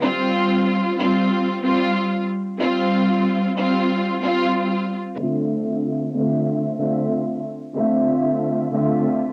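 At 93 BPM in 4/4 with a 59% swing on the sixteenths, this moody, reflective hip hop fragment in D minor is carried entirely by a solo string section, bowed with vibrato and sounding woody, lush and close up front through high-pass and low-pass filtering. The ensemble spans D3 to E5, resting on Fsus2 before shifting to Dm7 at 5.2 seconds. A light reverb and the grain of a home cassette recording frame the passage, which is cut from a longer piece and runs to 9.3 seconds.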